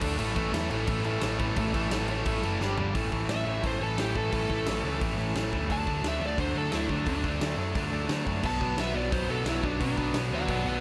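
Punk rock at a rowdy, energetic clip, this short cut from a longer piece stacks a double-tracked high-gain guitar, a compressed overdriven guitar in the background and a tight distorted guitar on picked riffs over a growly overdriven bass and a big, up-front acoustic kit with a punchy kick, fat snare and bright cymbals, until a drum fill at 2.6 seconds opens the way for a smooth overdriven lead guitar solo that enters at 3.3 seconds and runs to the end, all set in light reverb.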